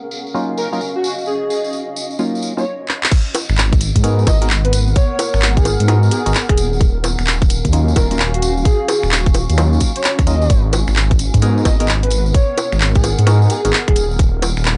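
A dark, rumbling detuned saw bass anchors this late-night, soulful two-step UK garage excerpt from 3.5 seconds, just after the drop at 3.1 seconds, alongside a tight electronic kick and a close garage kit of bongos, crash cymbal, finger snaps, handclaps and hi-hat, while a blurred granular cloud pad with sidechain pumping, a distant jingly tambourine, hollow phased organ stabs and an airy, dreamy lead with chorus and analog delay drift over swung sixteenths and minor ninth chords from the opening filter sweep onward, the whole mix carrying a dry, gritty cassette-tape haze.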